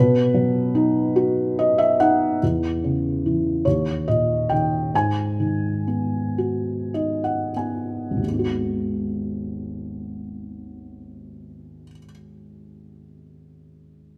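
A felt-muted upright piano opens alone, its thick felt giving each note a soft, mellow tone, with the mechanical noise of the action clearly audible and the instrument placed close and intimate. This is reflective, dark classical solo piano in 6/8, played with free rubato across a span from low bass to the upper middle of the keyboard. Short felt piano fills appear early on and again near 6.4 seconds, while the playing slows down through the middle passage from 2.4 to 8.2 seconds. The harmony drifts from a B chord through C#m/E and D#5 to a G#m7, and the piece continues into a final passage before this fragment of a longer work breaks off. A moderate recital hall reverb surrounds the muffled piano with a gentle sense of space.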